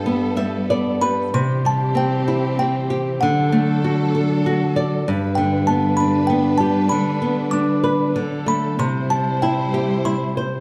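Gentle and tender, this lullaby in G major drifts at 96 BPM in a rubato 3/4, cut from a longer piece of children's music. A delicate, tinkling music box carries the melody, its bright, plucked tone slightly out of tune. Up front, a fingerpicked flamenco guitar provides the accompaniment with audible finger squeak, opening with a nylon-string fill from 0.1 to 1.3 seconds. Beneath them, a lush studio string section holds bowed chords with expressive vibrato and a smooth top. The harmony opens on Gadd9 and moves through C, D and G, all set in a dark, warm production with a wet recital hall reverb.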